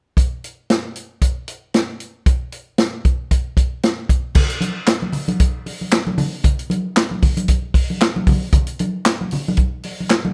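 A vintage drum kit sits up front in this gritty, energetic funk excerpt, its punchy kick, medium-tuned snare and dark cymbals captured in a small, natural-sounding room. The kit covers kick, snare, hi-hat, crash cymbal and handclaps, with a rolled-off top end that gives it a warm character. The groove moves in 4/4 with a light swing on the sixteenths, lending the pattern a loose, bouncing feel. At 4.3 seconds, as the music shifts into a second section, congas join in underneath the kit, sounding bright and damped, with thin skins struck by hard hands. The percussion sits lower in the balance than the drums, and a light reverb frames the whole performance as a short, lively cut from a longer piece.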